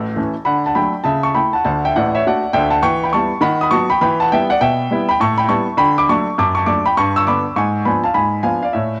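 A brisk 203 BPM swing in 4/4 drives this playful stride jazz fragment in D major, a snippet lifted from a longer piece. A clear baby grand piano plays solo throughout its 9.0 seconds, spanning A1 to E6 with an intimate, up-front presence, audible action noise, short sustain and a cassette-tape character. A moderate spring reverb adds space to this home cassette recording, as the harmony moves through D, Em, A9 and G before closing on G#dim7 at 7.6 seconds.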